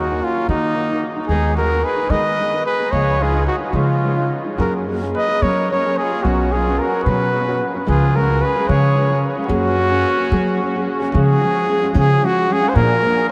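Mexican folk in the mariachi tradition, this short passage cut from a longer piece sounds festive and proud, moving in 6/8 with a free, rubato feel. A close-miked trumpet in classical style carries the melody up front, its warm tone trailed by a diffuse ambient delay. A second, punchier trumpet plays a supporting line beneath it until 10.8 seconds. A dark, thumb-plucked nylon-string guitar in a deep classical manner provides the accompaniment, tinted by analog chorus, while an upright bass with gut strings adds a woody, thumpy pizzicato foundation until 12.9 seconds. The harmony drifts through suspended and added-ninth colors before a new section arrives at 11.2 seconds, and the whole mix is soaked in a huge, dreamy reverb.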